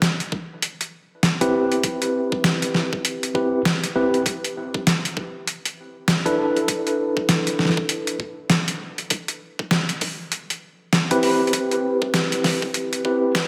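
This glitch hop excerpt opens on a gritty, pitched-down sampler-style drum kit, its compressed hi-hat and medium-tuned snare up front with studio reverb. A knocking electronic kick joins at 0.3 seconds, layered and overdriven, with the boxy character of a small room. At 1.4 seconds a worn, slightly out-of-tune tine electric piano enters with mellow stabs between C4 and B4, lightly overdriven, pumping against the sidechain and trailing tape echo through a low-pass filter. The harmony moves from Cmaj7 to E7sus4 and back to Cmaj7 at a swaggering 99 BPM in 4/4, with a 60% swing on the sixteenths. The whole passage works as a build-up, set in a dreamy, reverb-soaked mix with a lush hall ambience.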